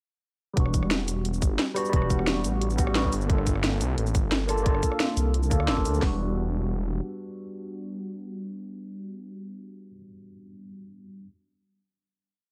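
A straight 4/4 liquid drum and bass groove at 176 BPM runs through a short, complete piece that feels soulful and lush. Two layered electronic drum kits carry the drop from 0.6 seconds: one gives a tight two-step kick, a cracking snare and open hats, while the other, sitting up front, adds rolling two-step drums with shaker, rim clicks, closed and half-open hats and its own snare. Underneath, a menacing detuned sawtooth bass in unison, blended with a sine and pushed through tube saturation, plays long gliding notes with a fast attack and an evolving filter swell. A worn, slightly out-of-tune tine electric piano, lightly overdriven through a combo amp with phaser and dub echo, holds chords with syncopated pushes, moving one shape in parallel from Em9 to Gm9 and back to Em9. After the drums drop out around 6.0 seconds, the bass holds on until about 7.0 seconds while the piano rings into a final chord and lingers until 11.3 seconds, and the whole mix stays dry and close.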